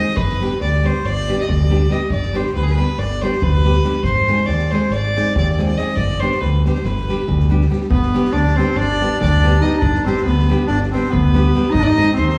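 Balkan folk in a Balkan wedding band style, this bittersweet, virtuosic excerpt races at 280 BPM in 9/8, with a rich, earthy, distant bowed fiddle carrying the melody over fingerpicked nylon-string guitar, a boomy-kicked soft-mallet drum kit in the background, and a bright, direct fingered electric bass, before a clear, close-miked clarinet enters up front with a second line at 7.9 seconds, all set in the reverberant space of a recital hall.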